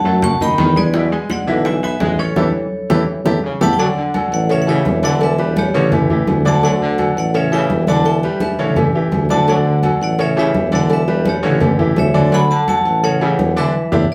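An up-front tuba carries the bass line in this joyful, sunny salsa cut from a longer piece, its warm, punchy tone marked by vibrato and scooped notes. Above it, a close-miked vibraphone struck with hard mallets plays the melody with a metallic, full, dry ring, while a bright trombone section sits in the background on a second line, tight and smooth-topped with light vibrato. A baby grand piano supplies brilliant, intimate accompaniment with short sustain and audible action noise. The percussion is layered: distant congas with a thin skin played with soft hands, round, low-tuned bongos and cowbell struck with hard hands, and vintage, band-limited timbales and agogo bells with a metal-shell sound. A band accent arrives at 2.4 seconds, with a drum fill at 2.7 seconds leading into a new section at 3.8 seconds. Another accent lands at 13.7 seconds, and a wet studio reverb places the band further back in the room.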